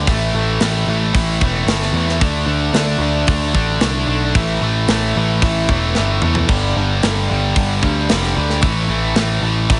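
A lightly reverberant small-room sound with a dark, rolled-off top frames this menacing, aggressive hard rock excerpt at 112 BPM, where a bright, double-tracked distorted guitar riff and a round, punchy picked electric bass sit up front over power chords moving from A5 to D5 and G5, while an acoustic metal drum kit with bright cymbals, medium-tuned snare and tight kick drives straight 4/4 time and cuts loose with a drum fill at 6.0 seconds.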